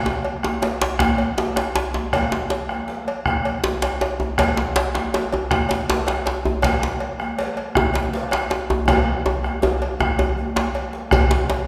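A tight, cracking djembe struck with hard hands sits up front in this driving, earthy West African drum ensemble piece in 12/8 at 107 BPM. It is joined by a deep, distant second djembe with metal rattles, a round bombo ringing in a wet hall-like reverb, and a metallic, close and dry cowbell, before a drum fill from 8.9 seconds leads to a brief grainy, very quiet shekere at 11.1 seconds in this cut from a longer piece.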